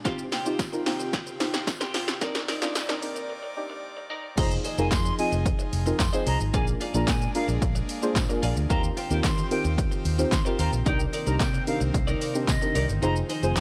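An airy, breathy pad with sidechain pumping and a bright, twangy twelve-string electric guitar riff open this confident, bittersweet dance-pop excerpt. They are joined at once by deep, warbling chord stabs and a punchy, up-front analog drum machine whose fill builds toward a short break, with a jingly tambourine soon following in the background. At 4.4 seconds the drop arrives as a round, foam-muted electric bass enters beneath a pure, distant concert flute melody with vibrato and analog delay, over chords moving through Eb69, Cm9, Fm7 and Bb7, before the kick is muted at 13.0 seconds in this gritty, dry hardware recording with light reverb.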